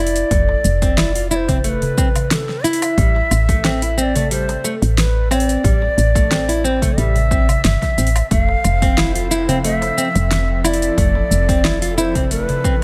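Organic downtempo at 90 BPM in 4/4, with a light swing on the sixteenths, this short excerpt cut from a longer piece carries a warm, mystical mood as its chords move from Fmaj7(no3) to Am7 at 3.0 seconds and back to Fmaj7 at 8.3 seconds. A hollow, straight-toned cedar flute with a soft attack carries the melody between A4 and F5, bathed in tape echo and shimmer reverb, while a dark, fingerpicked nylon-string guitar plays classical-style arpeggios through delay and shimmer reverb, its finger squeak audible. Underneath, a woody, round FM bass sits prominently in the low register with sidechain pumping, joined by an overdriven, punchy electronic kick and a layered deep house kit with a fat snare, metallic hi-hats, shaker and woodblock. A close, dry darbuka with a clay shell and natural skin adds acoustic texture from the background. At 8.6 seconds a breathy, detuned pad with a moving notch and slow attack rises softly behind the mix, its chorus and shimmer reverb pumping gently with the sidechain, all within a lightly reverberant room.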